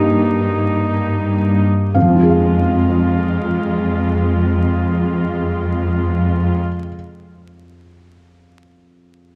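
A felt-muted upright piano, softly bowed sul tasto violas with light vibrato and up-front cellos open together in this longing, sorrowful cinematic fragment in F minor, easing in free time over its first 1.9 seconds as Cm7/G gives way to Fm, before the strings fall away at 6.6 seconds and the mellow, intimate piano carries on alone to 9.4 seconds within a dark, warm production of moderate scoring-stage reverb and vinyl crackle.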